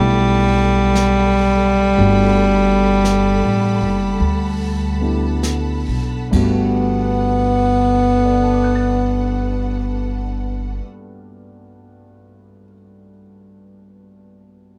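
Swung in a slow 4/4 that eases back through the opening, this late-night, intimate jazz ballad excerpt is carried by a mellow tenor saxophone, up front with scooped notes and a smooth top, over a woody pizzicato upright bass and a concert grand piano with deep bass and long sustain. Lush bowed strings with vibrato and a soft attack hold sustained chords behind them, while a brushed drum kit with dark cymbals and a boomy kick plays only from 1.0 to 6.5 seconds. The sound is close and detailed with light reverb, and after 10.8 seconds the piano carries on alone.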